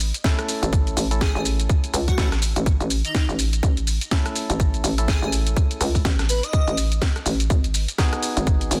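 A knocking, hollow FM bass with tube saturation and sidechain pumping sits up front in this gritty, bouncy bass house excerpt at 124 BPM with a swung 16th feel, joined by a tight electronic kick, a garage kit of cracking snare, bright hi-hats, rim click and shaker, mellow percussive organ stabs with chorus and dub echo, and an airy, dreamy detuned lead with vibrato and portamento that floats in from 1.2 to 6.8 seconds, all over a shift from A to G#m7 in a dense, heavily limited mix.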